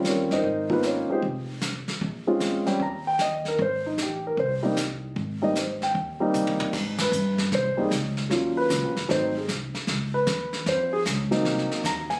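A swinging jazz piano trio in Ab major at 153 BPM begins at once, with a dark, mellow grand piano carrying the melody up front in plate reverb over growly, woody pizzicato upright bass and a vintage brush kit with a boomy kick and a rolled-off top. The harmony moves through chords such as Abmaj9, Bbm7 and Dbmaj9, and a drum fill at 6.3 seconds leads into a new section, where the band hits an accent at 6.9 seconds. Cut from a longer piece and captured on a phone in the room with light studio reverb and compression, it has a warm, swinging mood.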